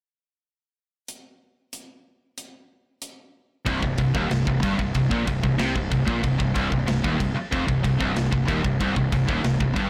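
Heavy metal with a heavy, dark mood, cut from a longer piece. A tight acoustic drum kit with an airy, big-room sound, bright cymbals and a tight kick plays alone from 1.1 seconds until 3.7 seconds, when a C minor chord arrives. Here an up-front, high-gain guitar and a compressed distorted guitar in the background join on low riffs, along with a growly, fuzz-laden fingered bass, all inside a blown-out, overdriven recording.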